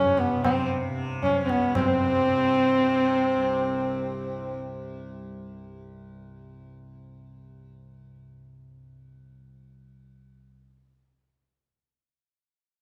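Close, detailed microphones and a light reverb give this short Hindustani classical fragment an intimate, serene and meditative feel. A dark sarangi leads up front, its nasal, woody tone bowed by one player with light vibrato, gliding portamento and the ring of sympathetic strings, all coloured by a tape echo. Behind it, a warm trumpet plays a second line in a jazz-tinged style with its own gentle vibrato, sitting in the background. A low-tuned tabla, distant and set in a large room with a short ring, sounds briefly until 1.9 seconds. Beneath everything else, a softly plucked tanpura holds a mellow, buzzing, shimmering drone, carrying on after the sarangi falls away at 4.6 seconds and the trumpet at 4.7 seconds, and sounding alone until 10.5 seconds.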